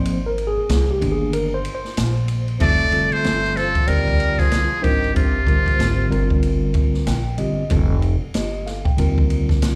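A swung jazz-hop groove at 94 BPM, cut from a longer piece, opens with a mellow tine electric piano solo with slapback echo over woody pizzicato upright bass and an open jazz drum kit with dark cymbals and a boomy kick, moving through chords like Ab69 and Cm9/G. At 2.6 seconds a buzzy, thin trumpet with a metal mute takes the melody, shadowed by a breathy subtone tenor saxophone with scooped notes, both carrying slapback echo until 6.4 seconds, after which the electric piano plays a brief fill. The cool, mellow mix sits in a small room ambience with club reverb, as if heard live through a venue's PA.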